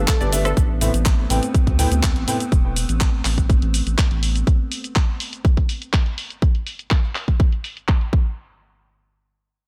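A progressive house excerpt in A minor at 123 BPM opens on a G chord with a mellow, detuned supersaw melody, a faint FM bell line, an evolving, bright wavetable pad and a round, dark analog bass, the pad and bass pumping against the punchy, up-front electronic kick that enters at 0.1 s alongside a house kit of cabasa, handclaps, hi-hat and rim click. A lush, detuned pluck arpeggio with delay flickers briefly in the background, while delayed grand piano stabs with a deep low end punch in from 0.2 to 2.4 s as the harmony moves to Amadd9 and a filter sweep runs over the bass. The driving, expansive groove then narrows to kick and percussion, dry apart from the pad's own reverb, with a faint mains hum underneath.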